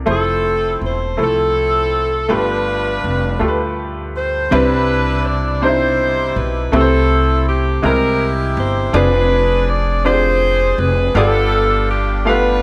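A tight saxophone section carries the melody up front, its warm, vibrato-laden jazz phrasing giving this slow gospel excerpt in 6/8 at 54 BPM a hopeful, reverent air. A clear, worn-sounding grand piano with short sustain supplies the accompaniment, while a woody pizzicato upright bass sits close beneath it. The harmony moves through rich chords in C major, from Fmaj7 and G9 to a Cmaj9 at 4.5 seconds and a darker Fm6, all set in light reverb and small room ambience.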